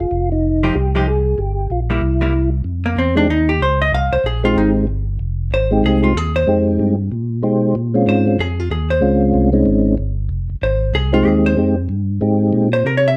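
A clean, picked hollow-body electric jazz guitar takes the spotlight, entering at 0.6 seconds and stepping into a solo from 2.7 seconds to the close of this excerpt, its compressed tone sitting up front. This is a soulful, smoky soul jazz organ trio at 188 BPM in 4/4, swinging its eighth notes in F minor. A soft, flute-like percussive tonewheel organ carries the melody, its mellow voice marked by second harmonic percussion, chorus vibrato and a slow rotary speaker, before it drops out at 12.7 seconds. Underneath, a second tonewheel organ supplies a fat, warm bass line with audible key click, vibrato and its own slow rotary speaker. The harmony settles on Fm9, with a brief turn through Gm6 and C7, and later a move to Bbm9 before returning home. A light reverb gives the close, present trio a touch of space.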